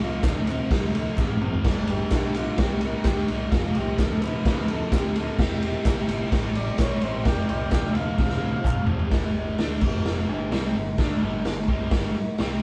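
Recorded as a band playing live in one stone room onto cassette tape, this swaggering, rowdy garage rock clip, cut from a longer piece, drives along at 128 BPM in a straight 4/4. Up front, a raw acoustic drum kit with a punchy kick and a dark, rolled-off top carries a gritty 12-bit sampler edge, while a double-tracked, compressed fuzz guitar riff churns over a growling, overdriven bass set in the background. A mellow vintage combo organ with light vibrato carries the melody alongside hollow group handclaps until both drop out around 8.9 s, as a drum fill leads into a closing stretch of guitar, bass and drums.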